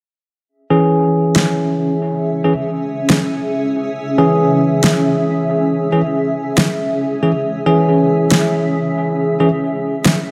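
A swung, half-time groove drives this brooding, cavernous deep dubstep fragment, where a bell-like tine electric piano enters at 0.7 s with bright, low-pass-filtered stabs trailing dub echo, a fat, overdriven electronic snare arrives at 1.4 s, and a blurred, evolving granular cloud pad holds mellow sustained chords, the whole scene set in a wet echo chamber.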